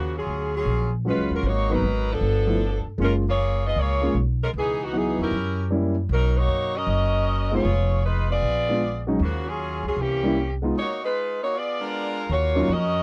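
A dry, close 1970s-style studio sound frames this swinging, dramatic big band jazz passage in E-flat minor at 155 BPM, where a clear saxophone section carries the melody with vibrato up front, a woody pizzicato upright bass plays beneath, and a warm concert grand piano with deep bass joins as accompaniment at 1.0 seconds over rich chords moving from Ebm11 through altered dominants back to Ebm9.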